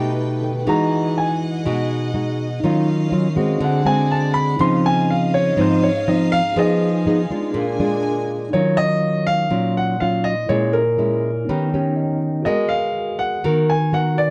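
Melancholic and intimate, this bossa nova excerpt at 122 BPM in Eb minor sets a natural-sounding concert grand piano melody, rich with deep bass and placed up front, over classical thumb-plucked nylon-string guitar and a clean, mellow tine electric piano sitting in the background. The grand piano is featured as a solo from its entry at 0.7 seconds, while a dark studio string section holds close, softly bowed sul tasto chords with light vibrato until 8.5 seconds. After that, the chords move through rich extended colours, and the electric piano adds a brief fill at 11.5 seconds, all within a moderate studio reverb and a warm production.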